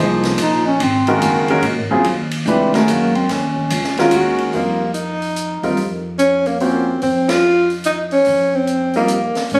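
An upright piano and a plucked upright bass open this searching, intense modal jazz excerpt in a swinging three-four. The piano sits up front, intimate and polished with audible action noise and long sustain, while the bass is thumpy and woody with steel strings. An open jazz kit joins almost at once, natural-sounding across hi-hat, ride, snare and kick, with dark cymbals, a high-tuned snare and a boomy kick. At 0.4 seconds a mellow bass clarinet begins a soft-attacked, classical-style solo over a suspended chord. At 4.5 seconds the harmony shifts and a close-miked tenor saxophone takes the melody, jazz-styled with light vibrato and scooped notes and touched by plate reverb. The band strikes an accent at 7.2 seconds, and the performance carries a moderate studio reverb though it was captured on a phone in the room.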